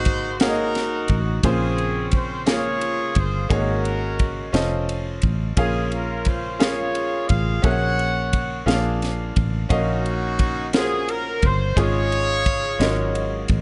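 A warm horn section with light vibrato carries the melody from the first moment over brilliant, short-sustained grand piano chords and a round, foam-muted fingered electric bass, and an airy, polished acoustic drum kit with punchy kick, high-tuned snare and ride cymbal joins at 0.1 seconds, together forming a jubilant, soulful slow gospel passage in 6/8 at 58 BPM that moves through rich chords such as Ab13, Bbm9 and F7b13 in a dry mix with a soft top end.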